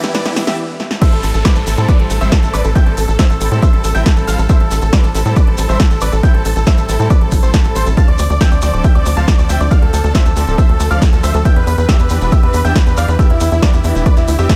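Uplifting trance at 138 BPM in A minor, euphoric and driving, cut from a longer piece: a brief build-up with a drum fill, riser and a stop gives way at 1.0 seconds to the drop, where a punchy up-front electronic kick and a dark, mellow concert grand piano in the background join the huge, detuned supersaw lead melody with delay, the tight, nasal sequencer bass, a distant, reedy chamber string section holding sustained chords, a big-room kit with crisp hats, and a grainy shekere, with the lead, strings, bass and piano pumping against the kick over Am7, Dm7 and Em7 in a dry mix.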